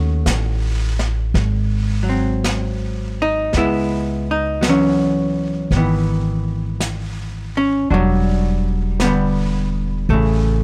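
The recording is dry and closely miked, with a detailed, intimate presence and a faint mains hum beneath it. This fragment of a smoky, slow swinging jazz ballad sits in an unhurried 4/4. The miked and amplified archtop guitar carries the accompaniment up front, its clean, picked hollow-body tone warm. Beside it, the upright bass sounds woody and thumpy with the character of gut strings plucked pizzicato, while a vintage brush drum kit enters at 0.3 seconds further back, its medium-tuned snare, hi-hat and brushes mid-forward with a rolled-off top. The harmony moves from D#m7b5 to G#7, then opens onto C#m11 at 3.5 seconds before shifting to Em9 and landing on A near the close at 10.1 seconds.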